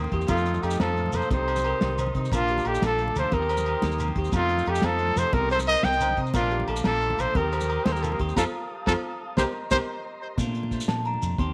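Highlife guitar band music in a sunny, joyful mood, moving at 119 BPM in a straight 12/8 over a cycle of jazzy seventh chords in Bb major. An up-front trumpet with vibrato, a soft attack and tape echo carries the melody, shadowed by a breathy, whispered alto saxophone, while bell-like celesta arpeggios, twangy picked electric guitar, a flute-like organ on a slow rotary speaker, a round, dark fingered bass and a smooth soul drum kit fill out the band, with congas, grainy shekere and ringing agogo bells in the background. After a band accent from 8.4 seconds, the horns drop out and the celesta takes a brief solo at 10.4 seconds, all set in a moderate echo-chamber reverb.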